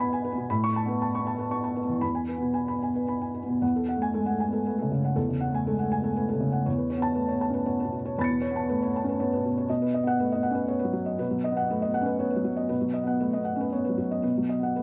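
Neoclassical minimalist piano in a hopeful, intimate mood, this short excerpt features a solo felt-muted upright piano, soft, mellow and vintage in tone, placed up front with tape echo in a moderate studio reverb, playing in 3/4 at 119 BPM with a rubato feel, spanning E2 to C#7 across chords from Aadd9 and E to F#madd9/E and B, with a new section arriving at 3.6 seconds.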